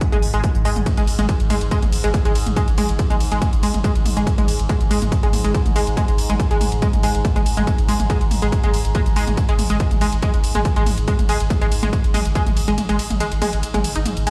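Relentless and industrial, this driving peak-time techno runs in a straight 4/4, cut from a longer piece. An up-front electronic kick, heavy and layered with a tape-warm edge, anchors the groove until it drops out at 12.8 seconds for the final stretch. A techno drum kit adds smooth hats, ride cymbal and toms, all pumping against the sidechain, while a deep, thick, saturated sub bass sits in the background under a low-pass filter. On top, a tight, nasal sequenced synth riff with a detuned sawtooth and pulse-wave bite is treated with overdrive, chorus and delay, pumping against the sidechain. Beneath it all, a resonant drone with moving overtones and ring modulation hangs in the background with a slow attack and long release, bathed in chorus and its own reverb, and the whole mix carries a light large-studio reverb as though played on a big system in a bare room.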